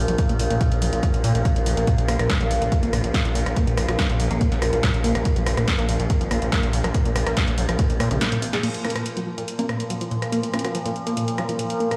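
A straight 4/4 pulse at 142 BPM drives this dark, industrial peak-time techno in Bb minor, as a punchy electronic kick and an analog drum machine of snare, hi-hat, rim click and crash push beneath a gritty, saturated synth bass and a tight, detuned, filter-swept sequenced riff with overdrive, tape echo and sidechain pumping, over a resonant overtone-sweeping drone and a moody, warbling ambient pad in the background, until a drum fill at 8.2 seconds gives way to a muted, phased dub chord stab from 8.8 seconds, the mix ringing through a big sound system in a bare stone room.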